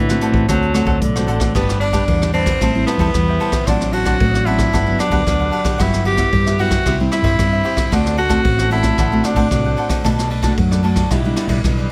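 Lightly reverberant and festive, this playful samba and choro excerpt moves at 113 BPM in a straight 4/4 in G major. A bright, vintage-toned tenor saxophone sits up front with forceful, punchy vibrato and takes a jazz-style solo from 1.6 s, while a full-bodied classical nylon-string guitar, fingerpicked with audible finger squeak, joins a crisp, picked cavaquinho in the accompaniment. Underneath, a woody fretless electric bass with a growly, hollow-body tone and a brushed jazz drum kit with dark cymbals, a boomy kick, hi-hat and rim clicks carry the music through chords such as Gmaj7, Emadd9/G and D7.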